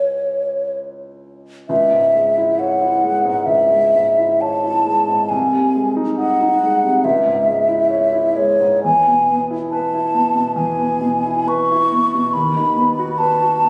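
Lyrical and tender, this romantic classical duo for flute and grand piano unfolds slowly at 68 BPM in 4/4, its beats stretched and pulled with rubato. The concert flute carries the melody up front, its airy, hollow tone shaded with vibrato and tongued notes, ranging from C#5 to C#6. Beneath it, the grand piano accompanies with a smooth, vintage character, sitting a little lower in level but also close. The piece, in C# minor, moves into a new section at 1.7 seconds, with harmony drifting from C#m through G#/B# and E before settling on B/D# near 12.3 seconds. A moderate recital-hall reverb, caught as if on a phone in the room, gives this fragment of a longer piece a warm, mellow air.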